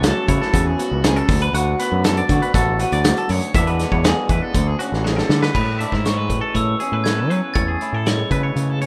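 Bright and wistful, this short math rock and midwest emo excerpt moves at 120 BPM in a straight 4/4, with a growling, overdriven fingered bass sitting up front, a slightly broken-up, lo-fi guitar through a small old amp playing accompaniment, a clean, twangy guitar picking arpeggios through spring reverb, and a loose indie drum kit with dark cymbals and a punchy kick in a pumping room, while a ringing glockenspiel with hard plastic mallets plays a bell-like melody through digital delay at the very start and again from 5.6 seconds, just after a drum fill leads the harmony from chords like F#m9/C# and Dmaj7#11 to Amaj9, all in a rough home demo mix.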